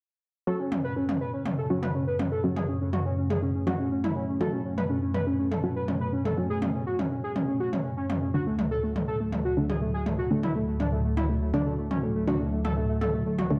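A fat, full-bodied analog lead carries the melody in this cinematic, driving stretch of melodic techno, its detuned sawtooth tone reinforced by a sub octave and wave-folded edges, sitting up front with vibrato, lush chorus and delay. Beneath it, a thick unison pad holds sustained chords with a slow attack, an airy noise layer and a bright sheen colored by chorus and phaser, while a filter sweep moves across the pad through the whole passage. A muted, deep dub chord stab adds short, filter-plucked hits that evolve over time, treated with chorus and delay. Layered electronic toms with a tape-warm character, re-recorded in a small room, enter at 0.7 seconds within the straight four-four feel. The harmony rests on F# minor before shifting to D at 8.3 seconds, all set in a moderate digital room reverb within this excerpt cut from a longer piece.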